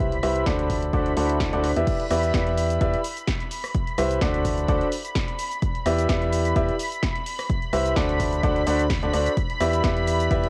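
Lightly reverberant and tape-softened, this excerpt sounds like a home recording on cassette, cut from a longer piano house track in E minor at 128 BPM with a gentle 16th-note swing and a bittersweet, soulful mood. A clear grand piano sits up front playing a riff through low-pass filtering and tape echo, while a silky, string-like analog pad with ensemble chorus holds sustained chords high above. An organ-like FM bass, hollow and dark with a fast, decaying attack, anchors the low end, and both bass and piano pump with sidechain compression along with the pad. The drums pair a punchy electronic kick with a tape-toned analog drum machine re-recorded in a small room, carrying snare, rim click, hi-hat, cabasa and crash cymbal. A very quiet electronic swell appears from 1.1 to 1.9 s, leading into the drop at 1.9 s, where the harmony cycles through Em7, Cmaj7 and D7 to the end.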